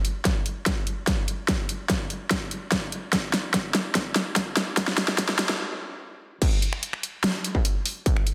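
A dubstep drum kit opens a menacing, chaotic half-time build at 146 BPM, its huge snare, bright hats, finger snaps and crash cymbal working through a drum fill under a filter sweep, with a distorted electronic kick joining at 0.3 seconds. Both layered, tape-warm drum parts sit up front in a dense, heavily limited mix with a moderate plate reverb. After a stop at 5.6 seconds, the drop hits at 6.4 seconds and runs until this cut-off fragment of a longer track ends.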